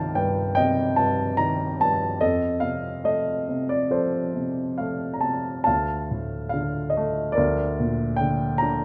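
Rubato phrasing around 72 BPM in 4/4 gives this short classical passage, cut from a longer piece, a tender, calm and lyrical character. A solo baby grand piano, warm, polished and up front, plays throughout the 8.8 seconds across a range from C2 to Bb5, moving from Cm7 and F to Dm and Gm/D, with a new section beginning at 5.7 seconds. A moderate recital hall reverb surrounds the present piano sound.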